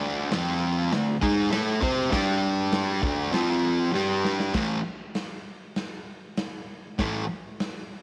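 A double-tracked, fuzz-distorted electric guitar riff opens up front at 0.0 seconds and is joined at 0.3 seconds by a raw acoustic garage kit of punchy kick, medium-tuned snare, hi-hat and crash, dark and rolled off on top in a bright stone room. The result is a swaggering, raw garage rock snippet under light reverb, in A minor at a straight 99 BPM, that moves through F5, D5 and G5 power chords, with a drum fill at 3.9 seconds leading into an A5 chord and a new section.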